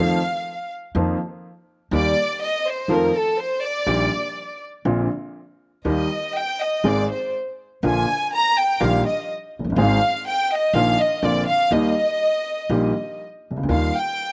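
Set in a rubato 4/4 feel, this tense, passionate tango fragment features a chamber violin section with an intimate, sul tasto tone and soft-attack vibrato, carrying a solo second line up front from 0.0 to 14.3 seconds. Beneath it, an upright piano with vintage, long-sustaining timbre and audible action noise supplies accompaniment, while a pizzicato upright bass with dark, steel-string character anchors the low end. The dry outdoor sound keeps every note close, as the harmony moves through F7, Bbsus4/F and Ab before settling on Eb and closing on Ebadd9.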